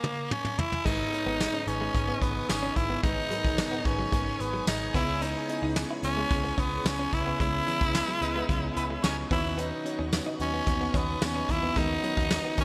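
Urgent and moody, this 1980s-style pop excerpt in G# minor moves at 110 BPM, opening with a brushed drum fill under a raspy, growling tenor saxophone that stays up front as the lead. At 0.9 seconds the band enters: a round, foam-muted picked bass, a mellow tine electric piano, a lush phased string machine holding sustained chords, a clean direct guitar riff swimming in chorus, and a very quiet double-tracked crunchy overdriven guitar, all over the dark, rolled-off brush kit. Between 8.2 and 9.4 seconds a tight horn section adds delayed stabs within a band accent, and the bright digital production sits in a moderate plate reverb.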